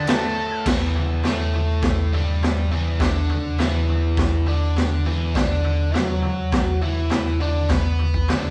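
A raw garage drum kit sits up front, its boomy kick and high-tuned snare joined by crash cymbal and toms, all with a saturated, gritty, mid-forward sound from a small room. This swaggering, rowdy garage rock cut from a longer piece moves at 102 BPM in a straight 4/4. A biting overdriven guitar plays the riff throughout, bright and double-tracked, ranging from E2 to B4 over chords that move from Em7 to D69 at 5.4 seconds. At the very start, a dark octave-fuzz lead guitar flashes a brief melodic figure on A5 in the background, coloured by tape echo, and drops out by 0.6 seconds. Light reverb frames the band, heard playing live together in one room.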